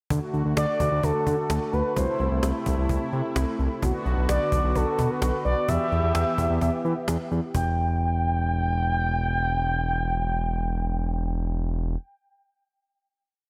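A brassy analog pad, a smooth synth bass and a snappy cajon open this short, driving synth-pop piece together, setting a nocturnal mood at 129 BPM in E minor, with the chords moving from D through Am/C and Bm to Em. The pad is bold and detuned, its sawtooth tone bright and nasal with a filter sweep, chorus and vibrato. The bass sits up front as a sequenced line with a fast attack and a square-wave edge, while the close, dry cajon, with its snares, plays a straight drum-machine beat. At 0.6 seconds an expressive synth lead enters with a mellow, motif-based melody built in sentence phrases, its soft-attack tone treated with chorus and a diffuse ambient delay. The pad stops at 7.5 seconds as the verse gives way to a final chord, and the cajon drops out shortly after, at 7.7 seconds, so the bass and lead carry on to the end at 12.0 seconds. A lush hall reverb soaks the whole mix in a dreamy, digital ambience.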